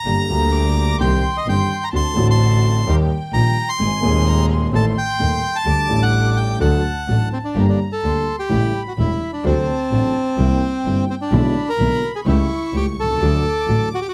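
A melancholic, dramatic tango excerpt in G harmonic minor, moving at 128 BPM in 4/4 with a rubato feel and lasting about 14 seconds. A reedy, dark bandoneon carries the melody up front, close-miked and dry, ranging from C4 to C6. Beneath it, a dark, woody upright piano with long sustain provides accompaniment, while a clear, biting double bass, a single bowed player with an airy, nasal, earthy tone and light vibrato, anchors the low end. A small violin section with a gut-string, period-style sound adds a high second line, and a rich, smooth symphonic string section sits distant and very quiet, supplying stabs. The harmony moves from Gm through Cm, D7 and Eb into Ab and Adim in the first section, then the second section, from 7.6 seconds, turns through A7, C7, E7/B and A7/C# before landing on D, all in a close, detailed recording with light reverb.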